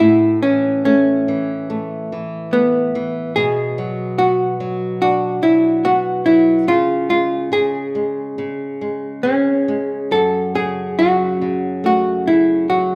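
From the first second, a clean, picked electric hollow-body jazz guitar carries the melody up front, its tone warm, while a dark, fingerpicked flamenco guitar sits lower in the mix as accompaniment, with finger squeak on the strings. This dreamy, wistful lullaby moves at a loose, rubato 71 BPM in 4/4, in F# minor and tuned slightly under standard pitch, to A4 = 439 Hz. The melody stays in a gentle middle register, while the acoustic part reaches down into the bass to support it. The harmony moves from Aadd9 to Bm at 3.4 seconds, then C#5, settling on F#m at 10.1 seconds. Both guitars play throughout this short fragment of a longer piece, surrounded by the soft, moderate bloom of a recital hall.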